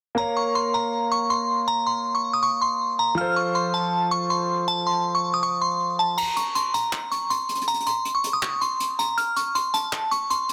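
Hip hop and trap in a half-time feel, melancholic and brooding: a crystalline, up-front FM synth bell carries the melody through chorus and a low-pass filter, over an intimate concert grand piano with audible action noise and deep bass. The filtered piano accompanies until 6.2 seconds, when the piano stops and a jazz brush drum kit enters with dark cymbals, an airy small-room sound, handclaps, hi-hat and crash. The bell continues to the cut at 10.5 seconds, and the master is dense and heavily limited.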